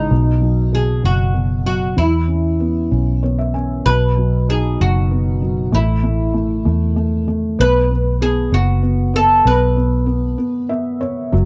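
A bright, woody oud carries the melody in this tender, swaying six-eight pop ballad at 64 BPM, its plectrum-plucked double strings sitting up front. A felt-muted upright piano gives soft, intimate accompaniment with audible action noise and slips in fills at 2.9 and 10.4 seconds, while a dark, round, foam-muted electric bass adds punchy support underneath. The dry, close 1970s-style studio sound keeps the playing immediate, and this cut from a longer piece moves into a second section at 3.9 seconds before a brief closing break.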